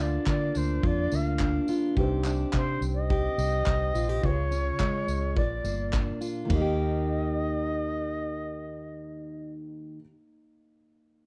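An airy, reedy shakuhachi carries the melody in this sunny, carefree acoustic pop excerpt, its soft attack and vibrato floating over an up-front picked steel-string acoustic guitar with audible finger squeak. A round, foam-muted electric bass and a mellow, thick-felt upright piano in the background fill out the harmony as it moves from Bb/D through Cmadd9, Db and Bb to Eb, while a loose indie drum kit with punchy kick, ride cymbal, toms, tambourine and handclaps plays from 0.3 to 6.6 s. The dark, warm production sits in a moderate studio reverb.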